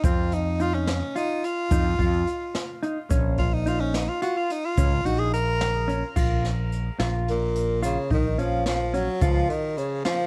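A home cassette recording with light reverb carries this brooding, intricate progressive instrumental in 11/8 at 216 BPM in Bb minor, where a warm, close-miked tenor saxophone solos with light vibrato over dark, fingered electric guitar arpeggios, a punchy fretless electric bass, brushed drums with a boomy kick and dark cymbals and a grainy shaker in the background, before a breathy, reedy alto ocarina enters with a second line at 7.3 seconds.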